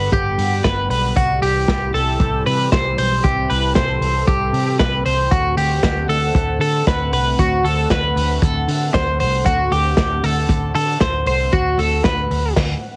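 Breezy and nostalgic, this jangly indie pop excerpt puts a bright, twangy twelve-string electric guitar up front playing arpeggios through harmonic tremolo and tape echo, over a swirling, detuned sawtooth pad with phaser and chorus in the background, a round, foam-muted picked bass and a muffled, lo-fi vintage drum kit, the mix bathed in light reverb and a heavily compressed radio sound before a band accent lands at 12.6 seconds.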